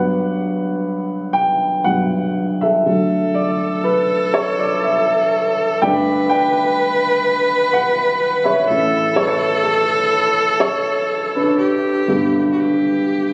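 A dark, woody upright piano accompanies this wistful, pastoral Celtic slow air at 62 BPM in 3/4 with uneven, rubato beats, joined at 2.9 s by a single rich, bowed viola with vibrato playing a close second line, both up front in a cathedral-like wash of reverb caught on a phone in the room, as the harmony moves through Gmaj7, Dadd9, Gsus2, A and G in this excerpt from a longer piece.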